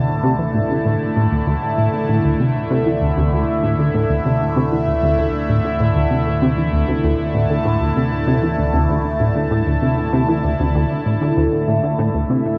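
Hypnotic and expansive, this excerpt of ambient, sequencer-driven space music moves at 97 BPM in a straight 4/4, opening on a Dsus2 chord across its 12.6 seconds. Up front, a phased analog pad holds sustained chords from D3 to A5, its swirling, nasal sawtooth tone detuned and thickened with a sub octave, shimmering through phaser and chorus. A punchy, funky analog bass plays a plucky riff between D2 and E3, colored by ring modulation, ensemble chorus, vintage 12-bit sampler grit and tape echo, while a filter sweep runs across it for the whole passage. Beneath, a deep, round sine sub bass sits in the background on a steady D2, and a very quiet, soft, dark pluck enters at 0.1 seconds with gentle arpeggios from D4 to A5, touched by a moving notch. The whole piece is bathed in a wet cathedral reverb with a 5.7-second tail and a cassette-tape character, giving the sense of a vast, echoing space.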